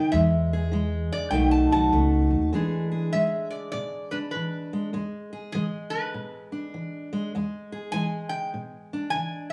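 A bright, nasal metal-body resonator guitar played with a steel bar and plate reverb opens this laid-back, swaggering acoustic country blues excerpt in E mixolydian at a swung 100 BPM, over a fingerpicked steel-string acoustic guitar with audible finger squeak, while a woody, growly pizzicato upright bass joins at 0.1 seconds through the E and B7 changes and stops at 2.5 seconds as the tune moves to E7, all heard from further back in a small, wet booth.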